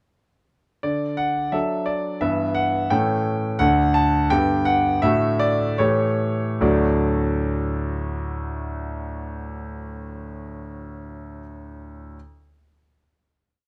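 Elegant and graceful, this brief classical-period piano sonatina in D major moves in a straight 2/4 at around 72-87 BPM, with a clear concert grand playing solo from 0.8 to 12.2 seconds. A single-line melody rides over bass and chords on the beats, the instrument sounding natural and up front with deep bass and long sustain, set in light reverb within a dark, warm production. The tempo slows from 2.9 seconds as the harmony passes through A7 and G back to D, and the phrase settles onto a final D chord held from 6.6 seconds.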